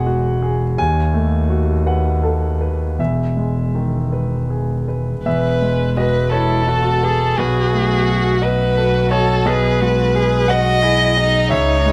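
Intimate and tender, this neoclassical excerpt for piano and strings drifts in a rubato 6/8 at roughly 52-60 BPM in E major, with a clear, natural grand piano and a rich, smooth bowed double bass sounding from the start under light reverb. At 5.3 seconds a single violin takes the melody with warm, even vibrato, up front yet with a distant sheen, and at 6.3 seconds one cello adds an expressive second line marked by vibrato and portamento. The harmony moves through Eadd9, B7/D#, Emaj7 and on to B7 and G#m/B.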